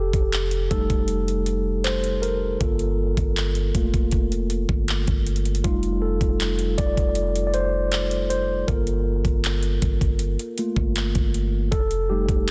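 A dry, dense and heavily limited mix carries this moody, sensual contemporary R&B excerpt in G minor at 79 BPM, where a mellow, clean tine electric piano sits up front trading F7 and Gm7 chords across 12.5 seconds, a round, dark 808-style bass decays under it, and a trap kit with a knocking kick, metallic hi-hats and handclaps enters at 0.1 seconds.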